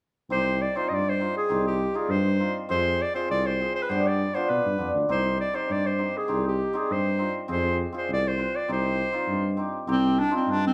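A straight 2/4 pulse at 100 BPM carries this bittersweet, soulful klezmer fragment in C harmonic minor, cut from a longer piece and moving through C minor, F minor and G chords. A clear, classical-style clarinet sings the melody up front, while a shimmering, ringing hammered dulcimer supplies the accompaniment and a mellow tuba, also up front, adds a jazz-style bass line with vibrato and scooped notes. The band plays live in one room, with a moderate large-studio reverb giving the sound a natural, spacious bloom.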